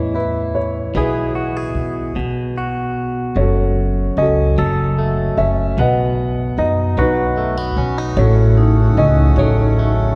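Acoustic folk-pop ballad in a slow, straight 6/8 at 50 BPM, intimate and hopeful, where a dark, woody upright piano with audible action noise carries the melody over twangy, compressed clean electric guitar and a thumpy pizzicato upright bass with gut strings, all bathed in a wet church reverb, before a reedy, breathing harmonium enters at 8.2 seconds with sustained chords and a ringing vibraphone adds background arpeggios from 8.6 seconds as the chords move from Aadd9 toward F#m/A in this excerpt from a longer piece.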